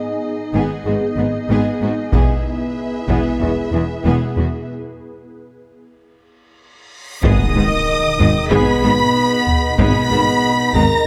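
Heavy-stick taiko drums drive a straight 4/4 pulse at 94 BPM from 2.1 seconds, giving this cinematic hybrid orchestral and electronic film cue in G# minor a relentless, vast feel. It opens on a soft, organ-like pad, pure, dark and gently evolving with detuned ensemble chorus, beneath a lush studio violin section that carries the expressive, vibrato-laden melody high above. Symphonic strings soon fill in around it: a focused second violin line, smooth violas in the background, and distant cellos and double basses, with the basses sliding in portamento, while a mellow French horn section holds sustained chords. The harmony moves between G# minor and E, and after a break a huge, bright reverse cymbal leads into an impact at 7.2 seconds, where a very quiet, roomy tuba joins the low end. A moderate concert hall reverb surrounds the ensemble, and the passage is cut from a longer piece.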